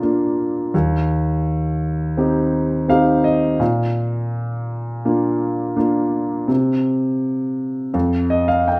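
In a straight, unhurried 4/4, a solo grand piano plays a tender, hopeful folk passage that drifts from Bb to Eb6 and back to Bb before the harmony falls away at 6.5 seconds. The piano sits up front with an intimate, slightly boxy tone, long sustain and audible action noise, spanning Eb2 to G5. A moderate large-studio reverb surrounds this brief 8.8-second fragment of a longer piece.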